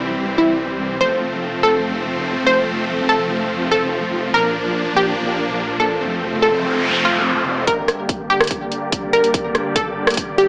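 A punchy, detuned unison pluck melody with tape echo opens this aggressive, heavy half-time wobble dubstep excerpt over huge, bright supersaw chords that pump under sidechain and sit behind a low-pass filter, with a saturated wobble bass carrying chorus and overdrive up to 7.7 seconds, while a noise sweep from 6.3 seconds leads into a build-up at 7.7 seconds, where the supersaw takes a filter sweep as an up-front dubstep kit of metallic hi-hats and rim clicks arrives with a punchy, tape-tinged electronic kick, all heard through a small-speaker sound with moderate plate reverb.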